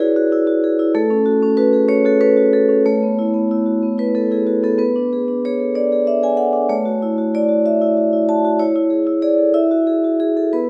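A ringing, metallic vibraphone played alone with medium mallets and its motor off sits up front in this reflective, hypnotic contemporary classical excerpt. The piece moves in a rubato 6/8 at about 63 BPM, drifting through chords such as Eadd9, A6 and Bm6 over 10.7 seconds as a lush recital-hall reverb lets each note bloom.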